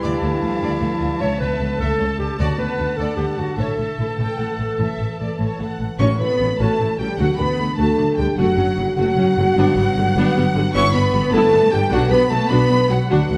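Bathed in a wet scoring-stage reverb, this soaring, adventurous heroic film-score passage in 12/8 sets lush, vibrato-rich violins on the melody over a second, softly attacked violin line, a clear solo clarinet, background violas and cellos, woody double basses, dark, roomy French horns holding chords and a ringing harp in arpeggios, until at 6.0 s the clarinet has dropped out and a pure, distant flute enters, a very quiet close-miked tuba joins the bass and timpani sound briefly in the background.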